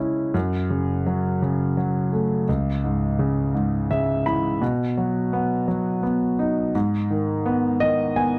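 A warm concert grand piano plays alone in this brief, aching pop fragment, its slow 6/8 pulse moving through F#m, C#m, B and G#m chords across a span from deep bass to the upper register. The piano sits up front with an intimate, natural tone and audible action noise, and it adds short fills at 3.5 and 7.8 seconds that heighten the dramatic mood. The close, dry 1970s-style studio sound carries a moderate small-room reverb.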